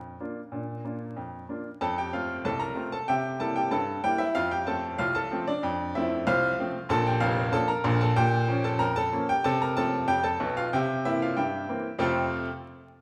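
A bright upright piano opens this lively, jaunty ragtime fragment on its own, playing solo from the start until 12.5 seconds. Its tone is woody and polished, with short sustain and a present, up-front placement, and it ranges from low F1 up to Bb5. Set in 2/4 with a straight feel, the piece moves from a Bb chord through F and C7 and back to F, then turns to Bb and a darker Bbm before F/C and C7 lead home. A brief opening passage gives way at 1.8 seconds to a longer section, and a final section arrives on F at 12.0 seconds as the fragment, cut from a longer piece, draws to its close. The piano sits in a wet, large studio reverb, caught live in a single room, with a layer of vinyl crackle lending the sound an aged surface.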